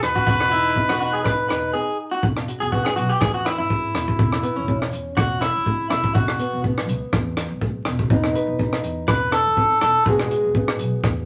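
A lightly swung sixteenth-note groove in four drives this sunny, carefree highlife guitar band, carried by a compact cocktail drum kit whose dark, smooth hi-hat, punchy kick and rim click sit up front in a small room. Underneath, a woody, growly upright bass is plucked pizzicato while a small, fingerpicked nylon-string guitar fills in gentle accompaniment. A raspy, gritty trumpet opens with a short up-front melody line with light vibrato, then drops out at 1.7 seconds for a brief break. Electric guitar arpeggios played through a small old amp, slightly broken-up, compressed and lo-fi, enter at 0.2 seconds and fall silent at 10.1 seconds. From 2.2 seconds a clean electric guitar solo takes over alongside them. The harmony moves easily between Eadd9, A/E and B/E chords, and the whole mix is bathed in wet studio reverb and vinyl crackle with a dulled top end, as though lifted from a longer piece.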